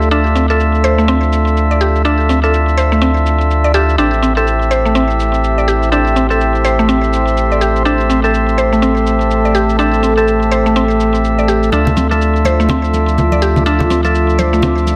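A swung sixteenth-note groove in four drives this earthy, spiritual afro house excerpt, carried by a very quiet, tape-tinged electronic shaker and a round, sine-like sub bass that sits up front with a deep, saturated weight. Above it, a fat, lightly overdriven tonewheel organ fires percussive stabs, its second-harmonic click and delay giving the chords a punchy edge. A woody, mallet-like FM pluck with a noise layer spins bright, short-decaying arpeggios through chorus and delay, while a dark, full-bodied analog pad of detuned sawtooth and triangle tones with a sub octave holds moody, evolving sustained chords under a filter sweep. The harmony moves from Dmadd9 to Am7 and back to Dmadd9 at 11.7 seconds, the same moment bright, close acoustic congas join the groove. A moderate plate reverb lends the whole mix a sense of shared space.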